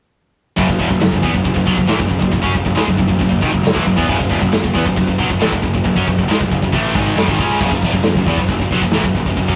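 Heavy and relentless, this heavy metal excerpt drives at 136 BPM in 4/4 on F# minor, with a bright, double-tracked high-gain guitar riff sitting up front from 0.6 seconds. Beneath it, a growly fuzz bass adds overdriven weight, while an acoustic studio kit pushes a punchy kick, medium-tuned snare, crash and china cymbal. The whole cut sounds like a rough rehearsal-room take, with saturated grit and a moderate stone-room reverb.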